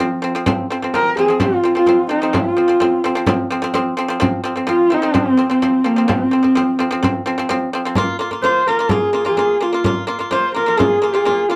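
Lightly reverberant and dark in tone, this solemn, windswept excerpt of Mongolian folk moves at 128 BPM in a straight 4/4 in F yu mode, shifting from F5 to Bb5 at 8.0 seconds. A husky, woody horsehead fiddle carries the bowed melody up front with vibrato and portamento, while a dry, percussive pipa plays fingerpicked arpeggios beneath it. A second, softer horsehead fiddle holds a background drone only until 0.5 seconds, when a frame drum struck with hard hands enters and plays to 11.4 seconds.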